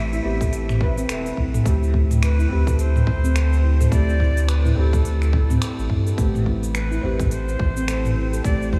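A small-room reverb gives this earthy organic downtempo piece in A minor an intimate closeness, moving at 106 BPM with a swung sixteenth-note feel over Am7 and D7sus4 chords. A breathy cedar flute carries the melody with chiff and vibrato through analog delay, over a soft, felt-muted upright piano with audible action noise in the background, a round, deep sine sub bass up front (both pumping to the sidechain), and ringing steel handpan arpeggios. Overdriven electronic drums re-recorded in a large room supply a tight kick, crisp hats, finger snaps, shaker and toms, while a very quiet udu joins at 1.9 seconds.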